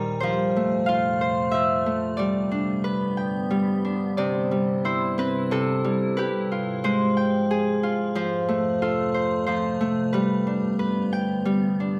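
A bright, ringing Celtic harp and an icy glass pad begin together, setting an innocent, sleepy lullaby in an unhurried 3/4 at 91 BPM. The fingerpicked harp carries the melody up front, spanning C3 to G5, with a short slapback echo trailing its notes. Beneath it, the pad holds sustained chords in an airy, crystalline tone, its detuned unison voices softened by chorus, a slow attack, a long release and its own reverb. The harmony moves gently through F, G and C, touches a dreamy Fmadd9 at 6.2 seconds, then returns to F and G. A moderate recital hall reverb of 1.6 seconds gives the whole piece a soft sense of space, and this 12-second passage is cut from a longer piece.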